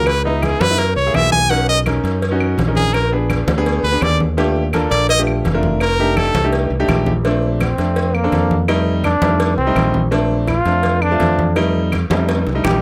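Sophisticated and sunny, this straight-feel Afro-Cuban jazz passage in Bb major moves at 167 BPM, with a brilliant, punchy trumpet soloing up front with light vibrato until 6.5 seconds over a clear, open concert grand piano and a growly, bright fingered electric bass. At 7.6 seconds a forceful trombone takes the solo with scooped notes and vibrato, while woody claves and soft-handed, low-tuned, ringing congas sit in the background beside tight, high-tuned cowbell and bongos played with hard hands in a distant, large room. Close, detailed microphones and light reverb frame the sound, and a percussion fill arrives at 12.1 seconds near the cut.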